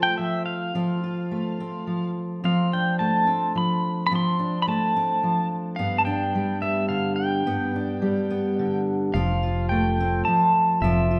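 In a straight 3/4 lilt at 107 BPM, this short, nostalgic and hopeful acoustic folk passage pairs a bright, full-bodied fingerpicked dreadnought steel-string guitar with a clean, compressed pedal steel that sings the melody up front with slide and volume swells, while a dark, round fingered electric bass joins at 9.1 s, all moving through F, Dm7/F and G to a closing Fadd9 in a reverberant recital hall.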